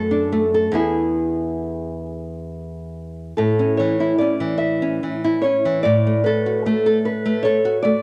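Two fingerpicked nylon-string guitars open together in a lyrical, serene romantic duo in A major, moving in a rubato 6/8 at roughly 44-51 BPM with tuning slightly below concert pitch at A4 = 436 Hz. One guitar carries the small-sounding melody, with audible finger squeak, while the other sits up front with a woody accompaniment of old strings, passing from D/F# through E and A to Asus2. Cut from a longer piece, the 8-second passage has the light reverb and small-room ambience of a home cassette recording.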